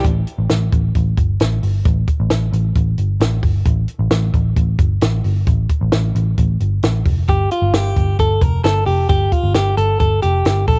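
A bright, twangy clean electric guitar, recorded direct with compressed, picked arpeggios and a cassette-tape tint, sits up front in this wistful, bittersweet stretch of jangly indie pop at 133 BPM in a straight 4/4. It sounds at the opening over a rootless Fadd9, then returns at 7.3 seconds as the harmony moves to a G7 lacking its third. Underneath, a vintage muted picked electric bass carries the low end throughout, dark, round and foam-muted through an amp, and sits just as far forward. A compact cocktail drum kit plays the whole way too, dry and natural, with a high-tuned snare, punchy kick and hi-hat. The piece is tuned slightly sharp of standard to A4 = 441 Hz, and the studio ambience has the homespun feel of a home cassette recording, in a short cut from a longer piece.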